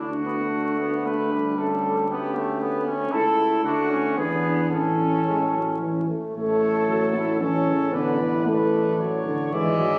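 A rubato 3/4 pulse at 114 BPM carries this noble, stately classical brass quintet excerpt, which settles into A major from 3.1 s and moves into a new section at 6.4 s. A distant, roomy cornet sits up front with the melody, a clear trumpet with light vibrato and soft attack takes the second line, a trombone with light vibrato and a mellow, punchy French horn fill out the accompaniment, and a warm, close-miked bass trombone anchors the bass. Moderate scoring-stage reverb and added studio reverb surround the ensemble, captured on a phone in the room with a layer of vinyl crackle.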